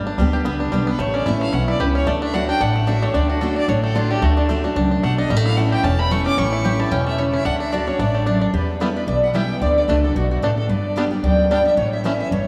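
A rich, smoothly bowed fiddle with light vibrato leads this joyful, lively bluegrass excerpt in D major at a brisk, swung 223 BPM, soloing through the first 8.5 seconds over bright, twangy banjo arpeggios, a picked dreadnought acoustic guitar with audible finger squeak and a woody, thumpy pizzicato upright bass, until a nasal, metallic slide resonator guitar takes up the melody at 8.5 seconds, the band set in a vast, echoing space by a drenching cathedral reverb.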